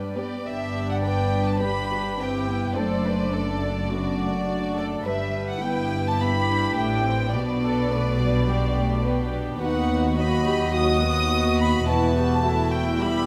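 A chamber-sized violin section carries the melody high above the ensemble, its bowed tone intimate and close, shaded with vibrato and played sul tasto with a soft attack. This is a quick, stormy and dramatic classical-period movement for string orchestra at 105 BPM in 4/4, set in G major and cut from a longer piece. Beneath the melody, a symphonic violin section adds a pure, floating second line, a dark viola section fills in the accompaniment with a smooth top, and a rich cello section anchors the bass, all of them also bowed sul tasto with soft attacks. A distant, woody double bass section with vibrato joins at 0.5 s, lending a lush depth underneath. The harmony moves from G through D7/F# and G/B to B/D# before settling on Em at 11.9 s, and everything is heard in a wet recital-hall reverb with a 1.5 s decay.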